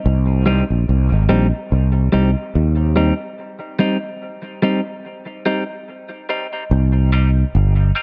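A growly, punchy fretless electric bass opens this hypnotic, heavy dub reggae excerpt at 0.1 s, sitting up front and direct in the low register on a C minor chord. At 0.5 s a clean, compressed electric guitar joins as accompaniment in the midrange, thinned by a high-pass filter and trailed by dub echo. The tempo is a slow 72 BPM in 4/4, with a gentle swing on the sixteenth notes that gives the groove a loose, rolling feel. A break arrives at 3.4 s, and from there to the end the guitar moves through a filter sweep, while the piece shifts into a new section at 6.7 s. A light reverb and a softened top end keep the sound dark and close.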